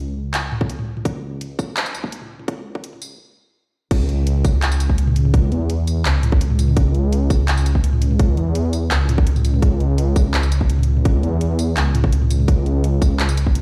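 A dark, detuned sawtooth bass sits up front from the opening moment: a deep, rumbling unison tone with a sine underpinning, a fast attack and sustained notes whose detuned layers beat against each other. This is a heavy, spacious half-time drum and bass passage, cut from a longer piece. A filter sweep drives the build-up, a stop lands at 3.2 seconds, and the drop arrives at 3.9 seconds. A tight, overdriven electronic kick punches up front, while a layered, produced kit adds bright hi-hats, handclaps, tambourine, toms and crash cymbal with its own overdrive grit. The whole mix sounds as if played through a big sound system in a bare stone room, with stone-room reverb and a high-pass filter thinning the ambience.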